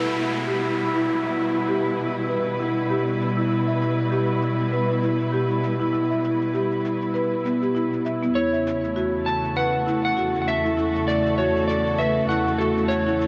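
Set in a light, small-room reverb, this meditative, mystical organic downtempo passage cut from a longer piece moves at 99 BPM in E dorian with a swung sixteenth feel, as veiled, con sordino strings hold dark bowed chords up front while smooth, dark marimba arpeggios drift through a low-pass filter sweep and digital delay, an electronic downlifter runs through the first 3.5 seconds, a very quiet bronze singing bowl rings with slow metallic beating, a gritty, compressed cabasa ticks faintly underneath, and at 8.4 seconds a slightly broken-up electric slide guitar enters up front with a delayed melody as the harmony shifts from Em to F#m/E.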